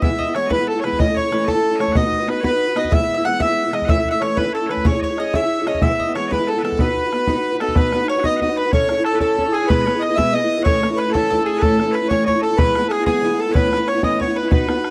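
A 6/8 jig rhythm with a straight feel drives this cheerful, rollicking Celtic folk tune, cut from a longer piece. A reedy, full accordion carries the melody up front, while piercing bagpipes and a woody, double-strung mandolin share a second line further back in the mix. Underneath, a boxy parlour-style steel-string acoustic guitar is fingerpicked close to the listener, and a boomy, open bodhran supplies the percussion. The tune falls into two halves, the second beginning at 7.8 seconds, and the harmony moves through E, A, B and C#m before closing on an Aadd9 at 13.6 seconds. The sound is a dry, close studio recording in a 1970s style, touched with light reverb.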